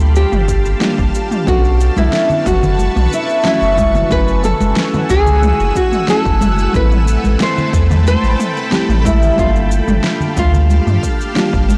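Sunset chillout at 91 BPM with a wistful, smooth mood, cut from a longer piece, where a fingerpicked nylon-string guitar with audible finger squeak carries the melody over a dark, round FM electric piano, a shimmering, ethereal ambient pad with phaser and octave-up sparkle, and an up-front sine sub bass through chords moving from Gm9 to Bm9, F#m9 and Am9, while a deep house kit of cabasa, fat snare and toms is joined by a punchy background kick at 0.5 s and hard-handed congas at 2.0 s, all within a blown-out, overdriven recording with light reverb.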